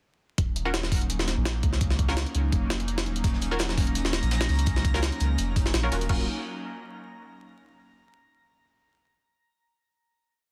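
A gritty, heavily chopped sampler-style breakbeat kit with a thumpy kick drives this short, dark and nostalgic drum and bass jungle piece at 168 BPM in Eb minor, over a deep, round dub sub bass with long gliding notes, an airy, breathy chorused pad, and sparse muted chord stabs soaked in dub echo and cassette tape, while a very quiet crunchy looped breakbeat enters at 3.2 seconds and a glassy, drifting high texture appears at 3.8 seconds before the piece closes on a final chord at 6.1 seconds under a layer of vinyl crackle.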